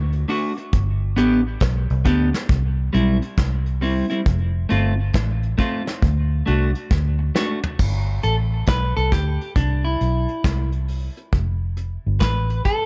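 A round, foam-muted electric bass opens this short cut from a longer roots reggae piece, joined almost at once by a soft brush drum kit and a clean, picked electric guitar carrying a dub echo. The mood is warm and sunny, with a slow, swung sixteenth-note feel and chords moving through D, G, C and F. The brushed kit sounds smooth and acoustic, pairing dark cymbals with a punchy kick and a medium-tuned snare, and it rolls into a fill from 6.9 to 7.8 seconds. From 7.8 seconds the guitar takes a solo in its middle register over the same chord cycle, its dark tone echoing into the small room. The bass, drums and guitar all sit up front in a close, gently muffled mix that holds its top end low.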